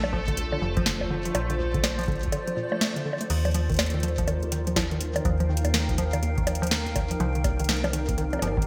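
A booming analog drum machine sits up front with a crisp snare, metallic hats, bongos and crash cymbal, tape-warmed and re-recorded in a large room with gated reverb and delay, joined by a deep electronic kick in this intricate, playful IDM excerpt at 123 BPM with a 16th-note swing in Eb lydian. Beneath it, a metallic FM bass with fast attack and mellow decay anchors the low end, while a warbly, dusty, lo-fi pluck runs chorused, delayed arpeggios and a blurred granular cloud pad with 12-bit sampler grit sustains chords moving from Bbmaj7 to Ebmaj7 and then Cmadd9. A reversed, dreamy swelling texture adds a faint shimmer until 3.3 s, all set in a bright 1980s-style digital production with moderate plate reverb.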